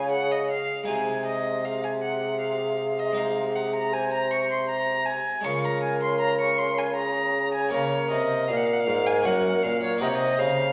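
In a straight triple metre, this flowing, serene baroque-style sonata movement with continuo pairs an airy, hollow wooden flute carrying the tongued melody with vibrato and a rich, smooth, up-front bowed violin on the second line, while a brilliant Flemish-style harpsichord plucks the accompaniment and a distant, roomy bassoon with light vibrato provides the bass, all four sounding together throughout this short excerpt as the harmony shifts at 7.7 seconds within a reverberant recital hall.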